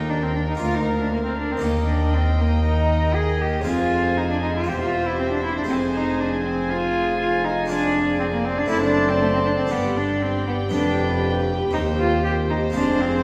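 Driving and stormy, this short cut from a longer baroque-style concerto movement moves in a steady four with straight, solo-episode energy. A solo cello with a nasal, gut-string tone sits up front carrying the melody, while a chamber violin section also carries a melody high above it with light vibrato and a second violin line fills in beneath. A dark, reedy viola section and a close-miked, dry Flemish-style harpsichord with two sets of strings supply the accompaniment, the harpsichord's plucked sound cutting through the bowed textures. Underneath, a cello section and a double bass section anchor the bass with a period-style, smooth-topped weight. Every part plays throughout the full 13.2 seconds, and the harmony darkens through diminished and dominant chords toward a minor close, all heard from further back in a wet scoring-stage space with a 1.9-second reverb tail.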